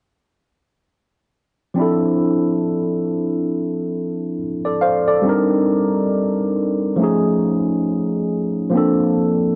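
A dark, lightly reverberant production frames this late-night, sultry R&B fragment at 69 BPM in D minor, where a solo overdriven tine electric piano, barky and gritty through a combo amp with analog chorus and sitting up front, enters at 1.7 seconds and moves through Dm7, Cm9, F7alt and Bbmaj9 over a swung sixteenth-note feel before stopping at 9.6 seconds.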